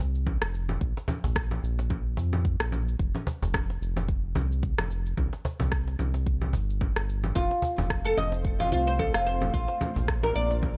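A lightly swung 110 BPM groove in 4/4 opens this peaceful, earthy organic downtempo piece in F major, built from tape-warm electronic cabasa, congas and rim click, a snappy close cajon, and a deep electronic kick that comes in at 0.3 s, all under a round, dark analog bass that pumps against the sidechain up front. At 7.4 s a bright, woody oud enters with arpeggios colored by tape echo, and from 7.8 s an ethereal, airy pad adds mellow sustained chords in the background, shimmering with ensemble chorus and its own reverb. The chords move from F5 through Bb5 and C5 before settling on F and Bb, and the overall sound is dry and gritty, cut from a longer piece.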